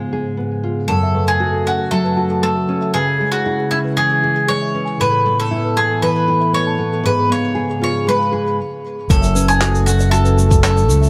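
Vinyl crackle and light reverb frame this delicate, hopeful folktronica excerpt at 117 BPM in 4/4, where a warbling, nostalgic tape-like pad holds dark, sustained chords beneath a fingerpicked nylon-string guitar whose arpeggios carry 12-bit sampler grit, a low-pass filter and audible finger squeak. From 0.9 seconds a bright, up-front bowl-back mandolin picks the melody through delay over chords moving from F#m to C#m and Asus2, while a sweet, bell-like small celesta adds a soft second line through digital delay. After a brief stop at 8.6 seconds, the music returns at 9.1 seconds with a punchy, overdriven fingered electric bass, a deep electronic kick drum, and a distant, roomy jazz brush kit with handclaps, hi-hat and shaker.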